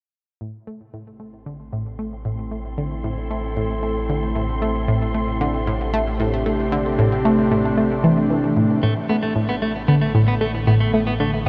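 Hypnotic and mysterious, this sequencer-driven slice of ambient space music opens at 0.4 seconds with a round, nasal, detuned analog pluck riff sitting up front, coloured by chorus, phaser, delay and shimmer reverb. A sawtooth drone bass with pulse-width modulation, a morphing, warbling vintage wavetable pad, and an airy, breathy, wind-like noise texture all fade in beneath it, swathed in a dark, huge reverb. At 8.8 seconds the chord shifts and a clean, picked, compressed electric guitar enters with arpeggios through delay and shimmer reverb.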